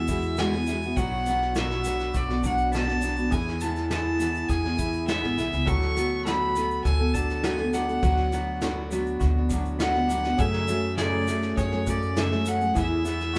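Gentle and warm, this acoustic folk excerpt at 102 BPM in 4/4 features a clear, earthy bowed fiddle carrying the melody up front over a full-bodied jumbo steel-string guitar with audible finger squeak, a slightly broken-up, lo-fi electric guitar playing tremolo arpeggios, a woody, thumpy pizzicato upright bass, a distant brush kit with a punchy kick, and a grainy shaker in the background, all sounding like a band playing live in one room, moving through chords such as Eadd9, Bm, D6 and F#madd9.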